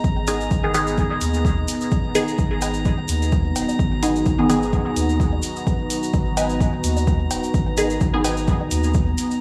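A swung 128 BPM pulse from a punchy electronic kick and background hi-hat drives this cavernous, meditative dub techno excerpt in G# minor, where a round, soft sub bass and a warbling, dark ambient pad pump beneath a resonant, 12-bit-gritty filtered chord stab soaked in phaser and dub echo, while a grainy tube shaker, tape-toned woodblock and cowbell, a glassy drifting-harmonics texture and, from 2.6 seconds, a second, fainter echoing stab riff fill out the space.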